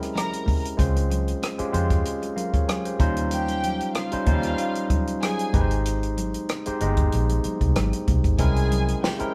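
Romantic and warm, this lush 1970s-style soul excerpt in Ab major moves at 95 BPM with a gentle 16th-note swing, featuring an accompanying barky, lightly overdriven tine electric piano up front that adds a fill around 2.1 seconds, over a dry, punchy compact cocktail drum kit with a high-tuned snare, a round, foam-muted vintage fingered electric bass entering at 0.8 seconds, a dark, woody violin section carrying a bowed second line with vibrato, and very quiet, thin-skinned congas, all sharing a moderate studio reverb as a band playing live in one room through chords like Dbmaj7, Eb13 and Abmaj7.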